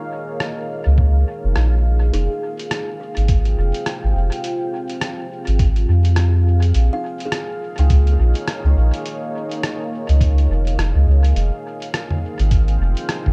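Ambient dub with a hazy, deep mood in a swung 4/4, cut from a longer piece and built on a dark, moody pad of detuned sawtooth chords with chorus and its own reverb, moving between Bbm7 and Fmadd9 from the start. A lo-fi sampler-style kit of hi-hat, rim click and toms enters at 0.4 seconds, muffled and pitched down with dub echo, while a round, soft sub bass sits up front and a thumpy, compressed electronic kick stays in the background. From 2.1 to 10.3 seconds a woody, hollow kalimba plays quiet arpeggios with 12-bit sampler grit and tape echo, all within a dry, dark production.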